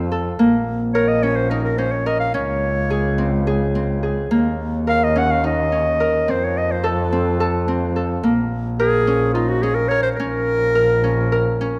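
A mellow, ringing Celtic harp opens the music with fingerpicked arpeggios, joined at once by a single bowed double bass whose rich, focused tone carries vibrato beneath it. At 0.9 seconds a warm, close-miked clarinet enters as the solo melody voice, played in a classical style and sitting up front with the other two parts. This hypnotic, pensive piece of contemporary chamber music moves in an uneven 7/8 at 215 BPM counted in eighths, with a straight feel in Bb minor. The harmony travels from Bbm through Db5, Eb5 and F to Bbm7 before settling back on Bbm. A moderate recital-hall reverb lends the trio a natural sense of space, and the passage is cut from a longer piece, ending at 11.8 seconds.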